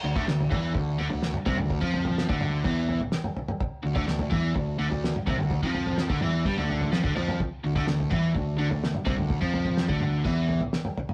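Cool and bittersweet, this short indie rock cut from a longer piece drives at 126 BPM in D minor, holding on a D minor chord as a biting, double-tracked overdriven guitar riff sits up front over a round, fuzz-laden picked electric bass, while a cloth-damped, thuddy drum kit with a fat snare, tight kick and toms enters at 0.2 seconds, all caught in a rough rehearsal-room recording with light reverb and warm saturation.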